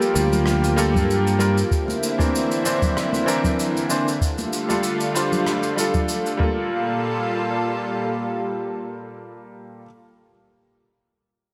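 Drenched in a big hall reverb over a small room ambience, this fragment of a longer sunset chillout piece has the expansive feel of an arena, warm and relaxed, with a gentle swing in the sixteenths. A bright, brilliant concert grand sits up front carrying the accompaniment, its worn, intimate tone showing audible action noise, deep bass and long sustain, trailed by tape echo. Alongside it, a thick unison pad of detuned sawtooth and square waves holds sustained chords with a slow attack, long release and chorus. A mellow concert harp rings out fingerpicked arpeggios in the background through tape and slapback echo until 3.2 seconds, while a round, up-front fingered electric bass plays only briefly near the start. A dry, deep analog electronic kick, a natural-sounding shaker and rim click played with brushes, and soft-handed, high-tuned vintage congas with slapback echo give the groove its pulse, all dropping out by 6.5 seconds as the harmony moves through Gm9, C9 and F69 before returning to Gm9.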